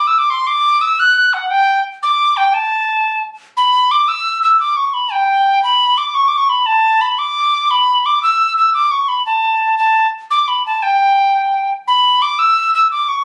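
A driving 6/8 lilt at 116 dotted-quarter beats per minute propels this short cut from a longer Celtic folk tune, its feel straight and its mood wild. A lone wooden whistle carries everything from 0.0 to 13.2 seconds, ranging from F#5 up to F#6, close-miked and up front with a pure, warm, woody tone, a chiff on its tongued notes and a touch of vibrato. The tune opens in A dorian and shifts to E dorian at 3.6 seconds, where a new strain begins, returning to that strain's start again at 11.9 seconds. The sound comes from a phone in a small room, with moderate reverb that gives a club-like ambience and compression that keeps the whistle close and immediate.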